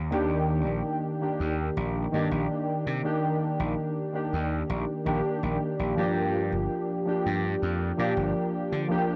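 A dry, gritty hardware recording with a cassette-tape haze and a dulled top end, set in a moderate hall reverb, carries this short vaporwave fragment cut from a longer piece. The mood is dreamy and faded, moving in a straight 4/4 over Ebmaj7 before shifting to Gm7 at 6.0 seconds. Warbly lo-fi synth keys sit up front as the accompaniment, a detuned blend of pulse and sawtooth tones with ring modulation, a fast attack and a decaying tail, thickened by lush chorus, 12-bit sampler grit and analog delay for a nostalgic shimmer. Beneath them, a punchy electric slap bass comes through bright, direct and amped, its overdrive and tube saturation giving it a gritty edge. The bass drops out at 8.9 seconds, leaving the keys to ring on briefly until 9.2 seconds.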